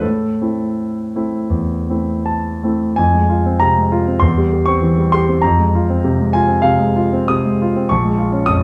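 This is a romantic classical character piece for solo piano, brooding and bittersweet in mood, with a freely flowing rubato feel in four. A clear concert grand carries everything alone across the whole 8.6-second excerpt, cut from a longer work, ranging from Bb1 deep in the bass up to Eb6. Its tone is natural with a deep low end and short sustain, and it sits up front even though the listener seems placed further back in a large studio with a wet reverb. The opening phrase rests on A minor before the music turns to F minor at 3.0 seconds, passing through C over E and back to F minor. It closes on a B-flat minor seventh at 7.9 seconds.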